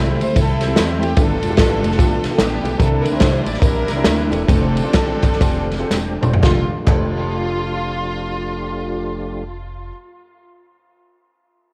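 Uplifting and jubilant, this brief cut from an uptempo gospel piece in F major swings along in 4/4 at 111-148 BPM, easing into a slowdown from 2.8 s to 6.4 s as a tonewheel organ fill and then a drum fill lead into a new section. A lush, bowed string section carries the melody with smooth vibrato and a touch of analog delay, over a dark, mellow baby grand piano tucked into the background, a clean organ with key click and slow rotary speaker holding quiet sustained chords, and a woody pizzicato upright bass. An up-front big-band drum kit with a boomy kick and a saturated tube shaker with group handclaps drive the groove until 7.0 s, all captured on a lightly reverberant home cassette recording.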